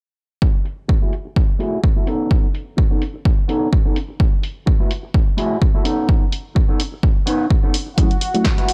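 Groovy and funky, this short cut from a longer filtered disco house track rides a swung 16th-note feel, with a filter sweep running across the whole passage. An electronic kick drum, recorded in a large room, sits up front from 0.4 seconds, joined almost at once by a picked, clean electric guitar riff and an analog drum machine whose punchy snare and hi-hats, like the riff, pass through a low-pass filter. The guitar and hats both pump against the sidechain, and the chords alternate between F#m9 and B9. At 8.0 seconds a mellow tine electric piano enters briefly through a phaser, alongside a clear studio violin section holding earthy, bowed chords with light vibrato and a barely audible tambourine. The whole recording has a dry, gritty character, like hardware captured to cassette tape.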